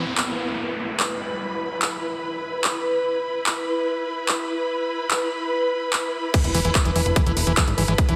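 Hypnotic and psychedelic, this short psychedelic trance passage in straight 4/4 opens on an up-front studio string section, bowed with vibrato and portamento and a smooth top, sustaining an E5 chord while a sound-effect downlifter falls away beneath it. From 2.1 seconds a sawtooth-and-sine drone with moving, resonant overtones enters in the background, coloured by chorus, phaser and its own reverb, and a filter sweep on it builds tension through the opening stretch. A layered electronic drum kit with bright hi-hats, handclaps and crash cymbal sits up front with overdrive, while the strings and drone pump with sidechain compression. At 6.3 seconds the drop hits with an impact: a tight, overdriven electronic kick enters alongside a squelchy, gritty acid bass riff, distorted and echoed with delay, and a punchy, funky wave-folded analog bass that plucks low and decays fast. The mix is heavily compressed with a radio-like edge, washed in a lush hall reverb, and the fragment is cut from a longer piece.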